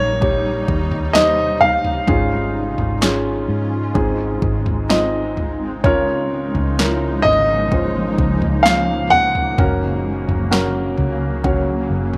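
Tender and heartfelt, this short excerpt from a longer pop ballad moves at a slow 64 BPM in straight 4/4, set in Db major with chords passing from Eb through Db/Ab, Ab, Db6 and Gb. An intimate grand piano carries the melody between Db5 and Gb5, sitting up front with its natural tone and audible action noise until it stops at 10.5 seconds. Beneath it, a soft, felt-muted upright piano plays mellow accompaniment, also close and present, while a cloudy granular pad holds sustained chords that blur and evolve with a slow attack, long release and its own reverb. A dark, round, foam-muted fingered electric bass anchors the low end, and from 0.2 seconds a layered deep house drum kit adds a deep kick, punchy snare and toms, overdriven and re-recorded in a small room. Light reverb and digital ambience give the mix a gentle sense of space.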